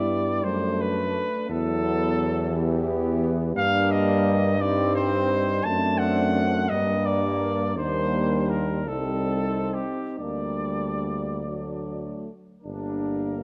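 A flugelhorn carries the melody with vibrato from the first moment of this melancholic, solemn hymn-like classical fragment for brass band. It sits up front over a prominent, clear tuba bass, while a dark French horn section with light vibrato, a euphonium and a trombone section supply the second line and accompaniment in the background. The rubato 6/8 pulse moves at 43-59 BPM in dotted quarters, turning from an opening G major chord toward G minor at 3.6 s and resolving on a G minor chord at 12.6 s, all within a moderate concert hall reverb that lends the flugelhorn and horns a distant, roomy glow.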